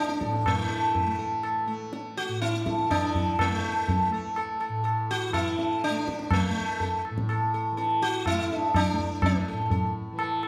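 Set in a straight 3/4 at 123 BPM, this short cut from a longer Hindustani classical piece feels radiant and devotional, with low-tuned tabla giving short-ringing strokes beneath the melody. Up front, a bright, plectrum-plucked sitar sings in the range from A3 to A4, its buzzing tone and shimmering sympathetic strings carrying a slapback echo. Behind it, a softly plucked tanpura holds a steady drone between A2 and A3, and the whole performance sits in a wet recital hall reverb.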